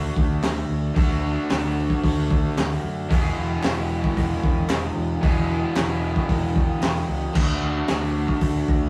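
A bright, overdriven, double-tracked garage guitar riff and a round, punchy fingered bass open this raw, swaggering garage rock excerpt together, joined at 0.2 seconds by a gritty, saturated breakbeat kit with dark cymbals, a high-tuned snare and a tight kick, while crisp, dry group handclaps sit in the background over a D to E to D progression in a rough rehearsal-room sound with light reverb.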